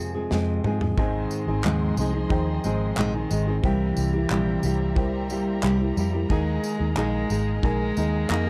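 A thumb-plucked nylon-string guitar sits up front in this carefree, sunny acoustic pop excerpt, its fresh strings giving a warm, classical tone over a straight 4/4 pulse at 90 BPM in Ab major. Beside it, a foam-muted vintage electric bass played with the fingers gives a round, punchy, amped low end. A modern studio drum kit with a tight kick and medium-tuned snare comes in with a fill from 0.3 to 1.0 seconds, with handclaps, tambourine and toms also in the kit. A single bowed cello plays a close, intimate second line sul tasto with light vibrato and a soft attack. In the background, a felt-muted upright piano adds a mellow accompaniment with short sustain and audible action noise, and from 1.0 seconds a con sordino string section holds veiled, lush chords from a distance. The harmony moves from Fm to Ab, then C7 and Ebsus4, all in a dry, dark, warm production.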